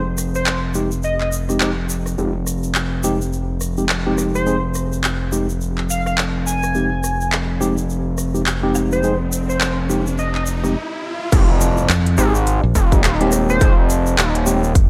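Glitch hop at 105 BPM in F minor with a swung 16th feel, playful and swaggering, built over an Fm7 chord. A gritty, saturated synth bass, a crisp-hatted dubstep kit with gated reverb, a grainy egg shaker, a tearing sync lead with chorus and delay, and worn, slightly out-of-tune electric piano stabs with 12-bit grit and sidechain pumping all carry the groove, while a background riser builds from 8.3 seconds into a brief stop. At the 11.3-second drop an impact hits, a punchy up-front electronic kick enters, and a bright fingered electric bass joins shortly after, all set in a light digital ambience with an 1980s-style production sheen.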